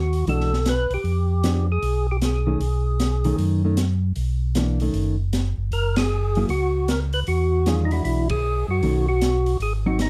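Greasy and bluesy, this soul jazz organ trio excerpt swings in 4/4 as a fat, percussive tonewheel organ carries the melody through a slow rotary speaker and light overdrive, pausing between 3.4 and 5.7 seconds, over a round, dark organ bass line, a clean, compressed hollow-body guitar comping, and an open jazz kit with dark cymbals, a high-tuned snare and a boomy kick, with band accents landing at 5.9 and 8.2 seconds.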